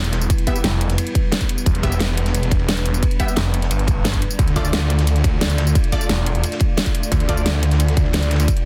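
Tense and mechanical, this excerpt of dark technical drum and bass drives at 176 BPM in E phrygian, moving from Em to Dm, with a snarling, detuned sawtooth bass growling up front under a moody analog pad that carries chorus and sidechain pumping. A punchy electronic kick enters at 0.3 s, layered with a dubstep kit of hi-hat, tambourine and a huge snare, while a gritty, saturated breakbeat kit with dark cymbals sits in the background. From 0.5 s a bold, bright orchestra-hit-like stab with phaser, tape echo and a filter sweep punctuates the dense, heavily limited mix, which has little reverb overall.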